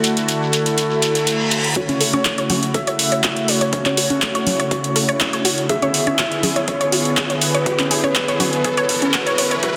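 A soft, octave-layered synth lead carries the melody of this expansive, driving progressive house excerpt, its mellow, round tone wrapped in chorus and dub echo over a thick, nasal unison pad that pumps beneath sustained chords moving from D to F#m7 and E7. The up-front deep house kit, with metallic hats and handclaps, is joined at 1.8 s by a deep electronic kick and a detuned analog pluck arpeggio under a filter sweep and digital delay, while a grainy shekere drops out at 1.7 s and congas sit in the background. A reverse cymbal at 1.0 s leads into a long build-up and riser, all set in a lush hall reverb with a dense, heavily limited master.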